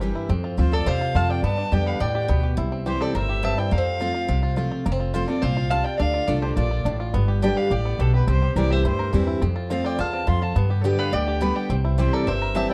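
The upright bass sits up front in this joyful, virtuosic bluegrass passage, its growly, thumpy pizzicato giving the low end a woody weight at a brisk 210 BPM in 4/4 and F major. The bluegrass banjo plays the melody from the start, twangy and percussive under its fingerpicks and set in plate reverb. A full-bodied dreadnought guitar, picked, supports it as accompaniment. At 0.6 s a rich, bowed fiddle joins on melody, smooth and even with light vibrato and its own plate reverb, while a lap resonator guitar adds a metallic, nasal slide line beneath it. The chords move through F, G and C, with a turn to D minor in the second pass around 6.0 s. The production is dark and warm with light reverb, and the passage is cut from a longer piece.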